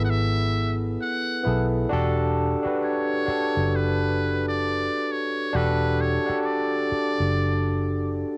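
A home cassette recording with light reverb carries this smooth, late-night R&B fragment, cut from a longer piece, with a lazy swing in its sixteenth-note feel. A barky tine electric piano, bright and clean through a combo amp, comps up front over a dark, round, foam-muted electric bass that sits punchy and tube-saturated beneath, as the harmony moves from F#m11 to Em11 at 1.9 seconds. Above them a metal-muted trumpet plays the melody in a jazz style, buzzy and thin with light vibrato, its tone taking on a cassette-tape grain.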